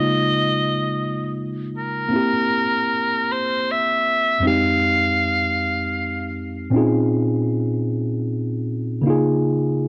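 A breathy, whispered soprano saxophone sings a sultry, yearning R&B melody over a worn, slightly out-of-tune tine electric piano played through a combo amp, both up front at a slow 52 BPM in 6/8 and in Bb dorian, tuned to A4 = 438 Hz. The saxophone's intimate, vintage tone carries vibrato, a soft attack and tape echo. The chords move from Db69 through C7, Fm9 and Bbm11 back to Db69, and the saxophone drops out at 6.3 s while the piano carries on alone. This fragment of a longer piece has a dry, gritty cassette-tape character with light reverb.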